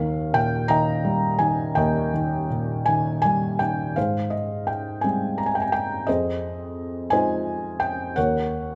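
Set in 6/8 at 56 BPM with a free, rubato feel, this short excerpt from a longer classical piece offers a peaceful, tender solo for felt-muted upright piano in Ab major, ranging from Eb2 to Bb5. The piano sits up front with a soft, intimate, mellow tone and audible action noise, moving from an Eb opening to Abmaj7 at 4.0 seconds, then through Fm7 and Ebm7. A moderate scoring-stage reverb surrounds it, and the top end is rolled off, keeping the sound warm and natural.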